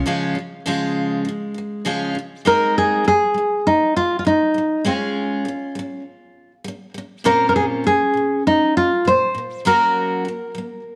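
A straight 4/4 pulse at 100 BPM carries this sunny, heartfelt acoustic pop excerpt in Db major, cut from a longer piece. A picked steel-string dreadnought guitar opens alone, bright and full-bodied, with audible finger squeak as it plays accompaniment from Bb2 up to Bb4. At 2.5 seconds a fingerpicked nylon-string guitar enters with the melody, its deep classical tone sitting between Db4 and C5 and standing louder in the mix than the steel-string part. The harmony moves from Db through Abadd9, Db/Ab and Bbmadd9 before settling on Gb. Both guitars sit up front inside a moderate echo-chamber reverb that gives the pair a gentle sense of space.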